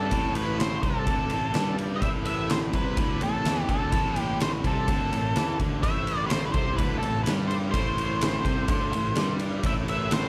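Blues rock in the power-trio mould with a southern rock streak, this brooding, gritty excerpt moves at 126 BPM in a straight 4/4, sitting on a single A minor chord throughout its 10.3 seconds. A dark octave-fuzz lead guitar carries the melody in a high register, while a bluesy overdriven second lead, very quiet and warm in tone, threads a lower line beneath it. A tight, double-tracked distorted rhythm guitar picks a bright riff in the low range, joined by a growly, punchy fingered bass run through overdrive and fuzz. An oversized, low-tuned acoustic drum kit sits up front with a boomy kick, fat snare and shadowy ride cymbal, its big pumping room sound saturated and raw. Light reverb and studio ambience frame the whole band.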